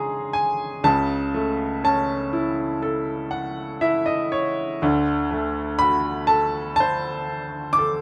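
Rubato phrasing drifts around a slow 61 BPM in 4/4 in this brief, dark and melancholic classical passage for solo piano, cut from a longer piece. A bright baby grand sits up front with a brilliant, natural tone and long sustain, spanning Db2 to D6 as it moves from Dbsus2 through A/C# to D7, with a fill from 2.8 to 4.8 seconds. Light reverb gives the piano a gentle sense of space.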